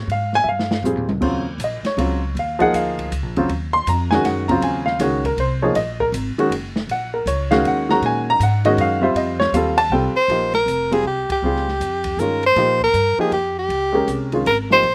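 A swinging 3/4 pulse at 159 BPM drives this intense, spiritual modal jazz excerpt in Eb dorian, with a woody, slightly detuned upright piano up front and a thumpy, pizzicato upright bass on steel strings underpinning a dark-cymballed, boomy-kicked acoustic drum kit that plays a fill before the Ebm9 vamp settles in. At 10.2 seconds a breathy soprano saxophone enters up front with subtone, vibrato and scooped notes, as the music shifts to Bb dorian over a Bbm69 chord and the band hits an accent at 11.2 seconds. The sound is dry and open-air, with little reverb.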